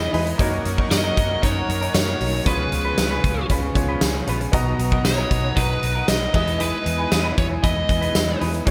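A romantic, nostalgic 1980s-style pop fragment opens with an overdriven lead guitar carrying the melody through digital delay. Around it sit a clear grand piano with audible action noise, a twangy clean electric guitar riff in lush chorus, a very quiet distorted rhythm guitar, an evolving brassy analog pad, fat analog synth brass stabs, and a dark, round, foam-muted fingered bass. A huge arena drum kit joins at 0.1 seconds with a punchy kick, snare, crash, hi-hat and tambourine, all bathed in gated reverb and framed by bright 1980s-style digital production in a small room.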